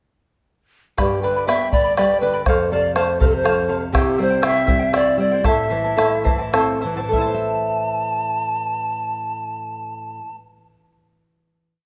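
A mellow, airy pan flute with vibrato carries a motif-based melody up front in this short, festive yet melancholic Andean folk piece in 6/8, over a bright, shimmering charango with doubled strings, a classical nylon-string guitar offering bass notes and chord figures, and a deep, dark bombo that stops at 7.4 seconds, as the music slows from 3.9 seconds into a final chord held from 7.1 seconds in a moderate recital hall reverb.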